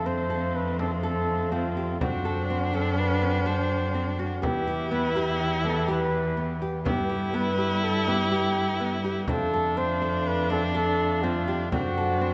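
A mellow flugelhorn carries the melody from the first moment over a warm viola second line with vibrato, a rich, up-front bowed cello bass and reedy, breathing harmonium chords in the background, while a fingerpicked nylon-string guitar adds full-bodied classical arpeggios. A deep frame drum joins at 0.8 seconds, sitting in the background as the chords move through F6, D7/F#, Em and G in a pensive, restless 5/4 chamber setting. The fragment, cut from a longer contemporary instrumental piece, is set in a moderate concert hall reverb.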